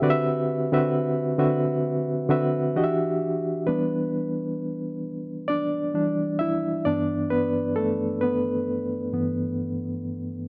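Late-night and introspective, this short R&B excerpt moves at a slow 66 BPM in E minor with a gentle sixteenth-note swing. A solo reed electric piano carries it all, its reedy, barky tone lightly overdriven and shimmering with fast tremolo through built-in speakers, sitting up front in a dry, close 1970s-style studio sound. The chords drift from D13 to Em9, then Em7 to G6, with the piano ranging from G2 to E5.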